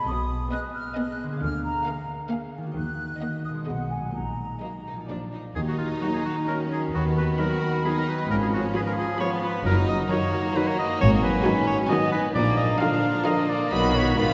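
Opening on airy flutes and bright, ringing harp arpeggios over lush bowed strings, this magical, mischievous cinematic excerpt in Eb minor moves in a 3/4 lilt at 132 BPM, with a background violin melody, a portamento-inflected viola section, and cello and double bass sections underneath, before solo oboe, clarinet, bassoon and tuba join at 5.6 seconds and a very quiet French horn section adds sustained chords at 6.0 seconds, all bathed in a wet church reverb.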